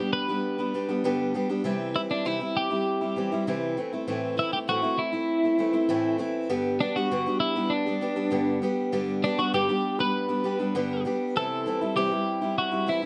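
Easy-going and heartfelt, this acoustic pop passage in G major moves at 99 BPM in a straight 4/4 through G, C and Am and back to G, with a clean, compressed twelve-string electric guitar carrying the melody up front while a bright steel-string acoustic guitar with fresh strings and audible finger squeak plays the accompaniment close by, the two set in a moderate studio reverb.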